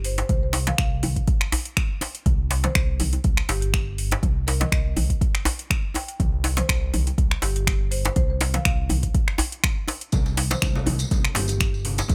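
Earthy and driving, this afro house excerpt moves at 122 BPM in 4/4 with a light 16th-note swing. A deep, tape-touched electronic kick and an overdriven deep house kit of finger snaps, metallic hi-hats and toms sit up front with a close, dry djembe struck with hard hands, while a dark, detuned sawtooth-and-triangle synth bass with portamento and vibrato pumps under sidechain and a woody rosewood marimba carries the melody through delay. At 10.1 seconds, distant ringing congas and a jingly, band-limited vintage tambourine join the groove, all inside a small room ambience.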